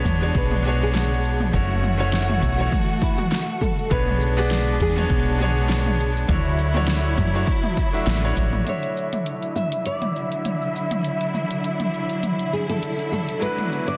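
A dense, heavily limited master with a moderate recital hall reverb frames this wistful sunset chillout excerpt, where a dark, fingerpicked nylon-string guitar carries the melody over a bright grand piano with audible action noise, lush bowed symphonic strings, a round, hollow-body fretless bass and a punchy, overdriven electronic kick, which both drop out after a band accent just before the strings take on a filter sweep at 8.7 seconds, while a deep house kit with a fat snare, cabasa, hi-hat and toms continues on and a very quiet soft pluck appears at 13.4 seconds.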